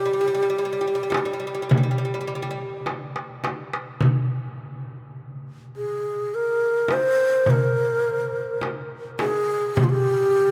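An Arabic maqam ensemble piece in G maqam kurd, this excerpt moves at 104 BPM counted in eighths across a straight 10/8 metre, with a soulful, hypnotic mood. A breathy low ney carries the melody up front between F4 and C5, its end-blown reed cane tone tongued and colored by vibrato. An acoustic oud plays a second line on G3 only until 2.6 seconds, its plectrum-plucked double strings sounding bright and woody on the fretless neck. A crisp, band-limited darbuka with a vintage metal-shell character and a small, bright frame drum with a live-room feel enter within the first couple of seconds, and a drum fill from 2.9 to 4.0 seconds marks the turn into a new section. The whole ensemble sits in a vast, echoing space, bathed in a long cathedral reverb.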